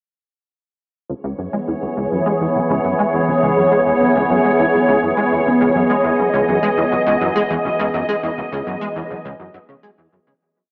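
Ambient, sequencer-driven space music in C# minor at 103 BPM, hypnotic and mysterious, where a punchy, plucky analog bass enters at 1.1 seconds with a five-step sequence that drifts against the 4/4 bar through tape echo, and a mellow, morphing wavetable pad holds a sustained C#m7 with built-in reverb from 1.5 seconds, both parts carrying ensemble chorus inside a long plate reverb and the warbly pitch drift and small-speaker tone of worn cassette tape, until a fade-out begins at 7.3 seconds.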